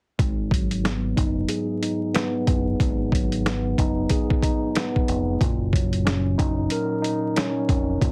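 At 0.2 seconds a gritty, pitched-down sampler drum kit, a round electric bass and a clean tine electric piano enter together, setting a moody, dark boom-bap hip-hop groove at 92 BPM in 4/4, with the 16ths swung at 61%. The up-front drums pair a thumpy kick and a medium-tuned snare with hi-hat, their compressed sampler character giving the beat its weight. The dub bass sits low, punchy and amped, and carries a shadowy tone under the harmony. The electric piano sounds as if played through built-in speakers and sits forward in the mix, with a filter sweep running across its part from start to finish. In G# dorian, the chords move from G#m7 to F#6 at 5.4 seconds, and the whole recording carries a heavily compressed radio quality, vinyl crackle and light reverb until this cut from a longer piece ends at 8.1 seconds.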